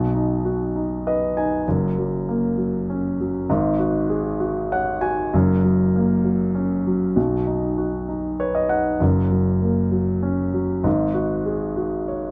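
Swaying and romantic, this short pop excerpt, cut from a longer piece, features a dark grand piano playing entirely on its own in an unhurried 6/8 lilt. The instrument sounds mellow and sits up front, spanning from deep bass notes to a modest upper register. Brief piano fills arrive at 0.7, 4.4 and 8.1 seconds, adding small flourishes. The harmony circles gently through B, F# and a suspended C# chord over G# in the bass, giving the passage a tender, unresolved quality. A moderate stone-room reverb surrounds the performance, lending it the feel of a live take captured in a resonant space.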